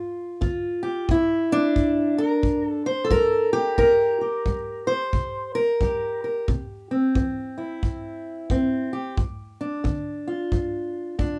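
A boxy, parlour-sized fingerpicked steel-string acoustic guitar sits up front and carries the melody in this soulful, rollicking acoustic country blues, moving from G7 to a long stretch of C7 before settling on G5 near 9.2 seconds. A tight, up-front kick drum played with brushes joins at 0.4 seconds, adding a small-room thump beneath the swung eighth-note groove. The pair sounds close in a short, wet booth ambience, and the passage is cut from a longer piece.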